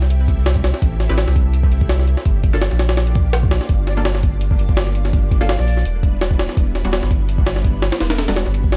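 Swung sixteenths drive this dark, frenetic drum and bass excerpt at 167 BPM, where a gritty, overdriven jungle sampler-style kit with a thumpy kick and high-tuned snare sits up front beside a deep, round dub sub bass, beneath silky, chorused string-machine chords moving from Am7 through Gm7 to Em7, with muted chord stabs carrying phaser and dub echo entering in the background at 1.1 seconds and a breathy, reedy concert flute with vibrato surfacing from 3.9 to 5.9 seconds, the whole set in a warm studio ambience.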